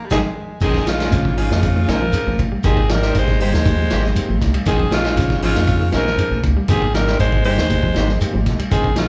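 This intense, hypnotic afrobeat clip opens with a drum fill and a full-band accent in its first 0.6 seconds, where a distant, roomy baritone saxophone briefly sounds before dropping out. From there a raspy, punchy alto saxophone carries the melody, shadowed in the background by a forceful tenor saxophone with light vibrato on a lower second line. A saturated vintage drum kit sits up front with dark cymbals and a tight kick, while a deep, round dub bass anchors the groove. Two clean, picked electric guitars stay in the background, one playing arpeggios and the other playing stabs with slapback echo, and a very quiet, reedy electric piano with tremolo adds accompaniment. Grainy shekere and high-tuned, hard-handed congas fill out the percussion. The whole band plays live in one large studio room with moderate reverb, over a steady cycle of minor eleventh and major ninth chords.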